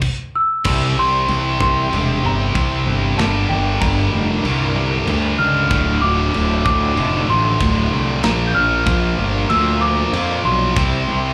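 Heavy metal at 95 BPM in 4/4, this short, aggressive and epic cut opens on a brief stop before dropping into a half-time feel at 0.7 seconds, moving through C, Gm, Dm and Bb before returning to C. Three guitars drive the riff: a bright, scooped high-gain guitar with slapback echo, a very quiet second high-gain guitar, and a double-tracked, overdriven semi-hollow guitar sitting in the background. A growly, fuzz-laden picked bass sits up front, while a tight metal drum kit with kick, snare and crash sounds saturated and gritty with a rolled-off top, tucked toward the back. Above the weight, a slightly out-of-tune, bell-like celesta with soft felt hammers carries the melody, its sweet, delicate tone touched by slapback echo. A very quiet, distant chamber string section holds sustained chords with a reedy gut-string tone and light vibrato. The whole performance comes across as a live gig heard through the venue's PA, with club ambience and light reverb around it.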